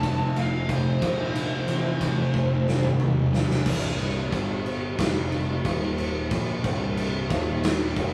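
This brief cut from a longer stoner and doom metal piece opens at once with everything sounding together: a dark, picked lead guitar carries a wah-tinged, distorted melody for its first 3.0 seconds, while two thick fuzz guitars grind out riffs beneath it, one murky and very quiet, the other warmer and more prominent until it stops at 3.6 seconds. A growly, overdriven fingered bass rumbles underneath, and a big acoustic rock kit sits up front with a tight kick, a medium-tuned snare, toms, and crash and ride cymbals ringing in a bright stone room. A drum fill from 2.3 to 3.7 seconds carries the music into a second section, where the quiet fuzz guitar, bass and drums press on through a heavy sequence of power chords. The mood is ominous and brooding, with a straight feel. The sound is a rough rehearsal-room capture with small room ambience and a light touch of reverb.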